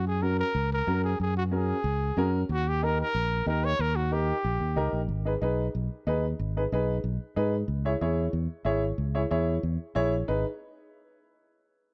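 A dry, close 1970s-style studio sound frames this driving, passionate cumbia in G# minor at 185 BPM, where a breathy, whispered trumpet carries the melody until 4.9 seconds over a round, punchy fingered electric bass and a woody upright piano with long sustain, moving from F# and D# to G#m and C#m in a fragment cut from a longer piece.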